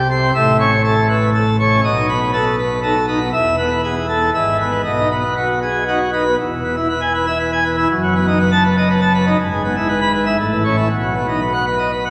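Brilliant and jubilant, this short cut from a longer classical organ toccata in triple time features a solo pipe organ on a full plenum with bright mixtures and romantic voicing, spanning deep pedal tones to high treble, sitting up front in a wet church acoustic whose long reverb tail lingers, as the harmony moves through subdominant, dominant and tonic chords in two sections that turn at 6.4 seconds.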